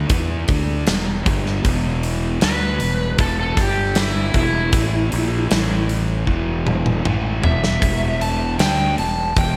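A double-tracked fuzz guitar riff with slapback echo opens this brooding, heavy blues rock and southern rock excerpt alongside a growly, overdriven fingered bass set up front, as a big acoustic rock kit with a tight kick and rolled-off top joins under light small-room reverb, before an overdriven slide guitar melody with its own slapback enters at 2.4 seconds and the drums play a fill from 6.3 to 7.8 seconds over chords moving from Em through G5, E5 and A5.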